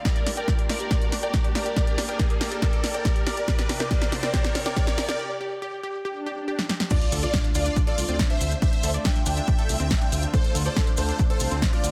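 Euphoric and driving, this uplifting trance passage at 140 BPM in D minor builds through a drum fill and rising effects, pauses in a break at 5.2 seconds, then hits the drop with an impact at 6.9 seconds, where grainy maracas join. Huge, lush supersaw chords carry the melody through a low-pass filter and ensemble chorus, over a fat, nasal analog bass and a punchy, tape-warm electronic kick placed up front, with an analog drum machine supplying snare, hi-hat and crash. Sidechain pumping moves the supersaws, bass, a bright delayed unison pluck playing arpeggios, and an intimate chamber string section holding sustained chords, while a very quiet grand piano traces a second line, all within light digital ambience and a dense, heavily limited master.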